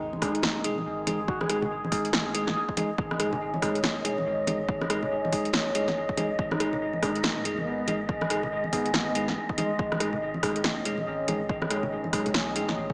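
Deep dubstep with a cavernous, brooding mood, moving in a half-time feel with swung sixteenths. An overdriven electronic kick and a punchy, up-front deep house kit with metallic hats, rim clicks and snare sit in a large-room sound, while congas add an acoustic, small-room touch. A soft, round sub bass stays in the background under an overtone-sweeping drone whose resonant, slow-attack sustained chords are coloured by chorus, phaser and built-in reverb. A bright, bell-like tine electric piano plays clean stabs through dub echo, and from 1.0 seconds an airy, wind-like tuned noise texture breathes above the mix. A dark duduk carries the melody with vibrato and scooped notes, heard briefly at the opening and again from 6.5 to 10.0 seconds, trailed by dub echo. A very quiet sub drop marks the start, and the whole excerpt is bathed in a lush hall reverb with a small-speaker tone.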